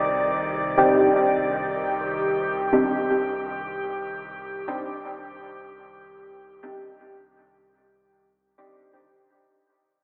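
Cavernous and hypnotic, this short dub techno cut from a longer piece sits on a single Cmadd9 chord with a gentle 16th-note swing, fading out across its full 9.2 seconds. An airy, breathy pad with a slow attack and long release holds sustained chords up front through chorus, while a round sub bass hums softly in the background and, from 0.8 s, deep, mellow chord stabs with a dark sub-octave weight decay through chorus, phaser, cassette-tape grit and dub echo. A lush 2.5-second hall reverb and stone-room ambience sound as if played on a big sound system in a bare room, filtered through a telephone-like tone.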